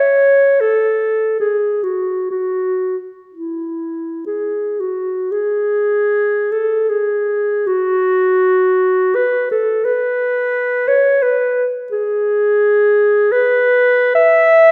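A free, rubato flow in three gives this classical excerpt an unhurried, breathing pulse. A warm solo clarinet, placed up front, carries a yearning, lonely line alone for the full 14.7 seconds, shifting into a new section at 5.3 seconds. The playing sits inside a wet recital hall reverb that lends the lone voice a spacious, lingering halo.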